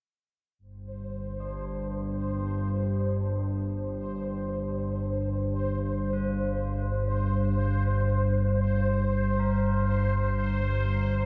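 Soaked in a huge, dreamy reverb with a long, lingering tail, this dark ambient drone piece floats in free time with an unsettling, ominous mood. Up front sits a low analog drone, nasal and slowly evolving, built from sawtooth and pulse waves with pulse-width modulation and chorus, entering at 0.7 seconds with a slow attack and sustaining on a long release. Just before it, a bubbling stepped-filter texture appears high above at 0.6 seconds, its detuned, resonant sawtooth tone jumping through random filter steps, softened by chorus and its own reverb. From 1.4 seconds, tubular bells fade in deep in the background, playing solemn, mellow arpeggios struck with a rawhide hammer, their metallic ringing smeared by a diffuse ambient delay. The whole passage rests on a single G minor chord, cut from a longer piece.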